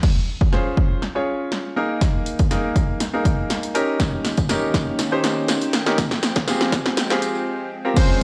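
A punchy analog drum machine drives this euphoric, upbeat dance-pop excerpt at 121 BPM, its tape-warm kick, snare, hi-hat and crash sitting up front through a build-up with a drum fill and a filter sweep, while a clear, polished baby grand piano provides accompaniment that pumps against the sidechain from 0.5 seconds as the harmony moves from Dbmaj7 through Absus2 and Eb7 to Fmadd9. At 4.0 seconds a soft, smooth supersaw adds full-bodied detuned sustained chords with a moving notch, also pumping, and a very quiet, jingly vintage tambourine joins until a brief break at 7.5 seconds. A catchy, plucky unison lead sounds a single C5 at 8.0 seconds, all heard as if on a big sound system in a bare stone room with light reverb and a high-pass filter.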